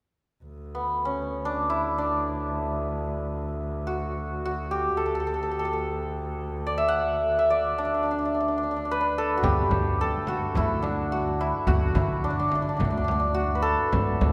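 A distant bowed double bass drone with vibrato opens this Persian modal ensemble excerpt at 0.4 s, and from 0.7 s a bright, shimmering santur rings up front over it with a stately, festive melody in free time in dastgah mahur on D. At 9.4 s they are joined by woody pizzicato upright bass on gut strings and by a deep frame drum and tombak set in the background, within a reverberant church acoustic.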